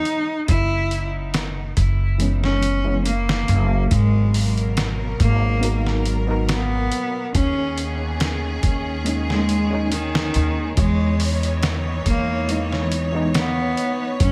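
Dark and hypnotic, this trip hop excerpt sets a clear, focused, distant-sounding bowed cello melody carrying vintage 12-bit sampler grit and dub echo over a gritty, pitched-down sampler-style drum kit with a thumpy kick, a woody pizzicato upright bass with tube saturation entering at 0.5 seconds, a reedy overdriven electric piano through a combo amp with fast and harmonic tremolo and tape echo from 2.2 seconds, and lush, smooth symphonic strings holding chords from 3.9 seconds, all in a dry room dusted with vinyl crackle.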